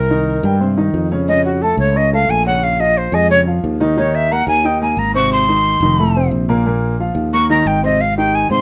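Afro-Cuban jazz at 179 BPM in Ab major, lively and sunny, with a breathy, crisp-attacked flute soloing over a woody upright piano with audible action noise and a growly fretless electric bass, all up front in light reverb through this 8.6-second excerpt that moves from Cm7 toward a closing Abmaj7.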